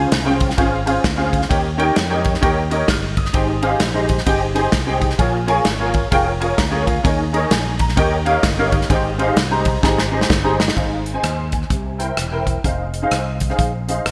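Bright, 1980s-style digital production in a small, lightly reverberant room frames this hopeful, reverent uptempo gospel excerpt at 130 BPM in swung 4/4 and Ab major, where an open, up-front baby grand piano with ensemble chorus carries chords such as Dbmaj7, Eb7 and Abmaj7 and adds a fill at 6.4 seconds, a dark, round fingered electric bass holds the low end, and an airy, polished acoustic drum kit with punchy kick, medium-tuned snare and gated reverb drives the groove through a fill at 9.8 seconds into a new section at 10.8 seconds.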